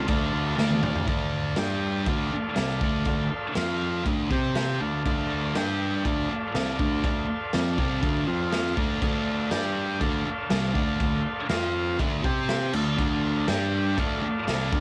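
Raw and swaggering, this garage rock fragment is cut from a longer piece and captured as a home recording on cassette, dry with little reverb. A thick, double-tracked fuzz guitar sits up front playing a warm, distorted picked riff, while an overdriven combo organ holds buzzy, vintage sustained chords above it. Underneath, an overdriven picked electric bass gives a dark, round, punchy low end. The raw garage drum kit comes in at 0.1 seconds, with a brief fill from 0.6 to 1.1 seconds leading into the main groove. The kit sounds saturated, gritty and up front in a small, pumping room, with a punchy kick, a medium-tuned snare, toms and dark cymbals under a rolled-off top. The straight 4/4 feel circles around D minor, moving through G, F, D and C power chords before returning home each time.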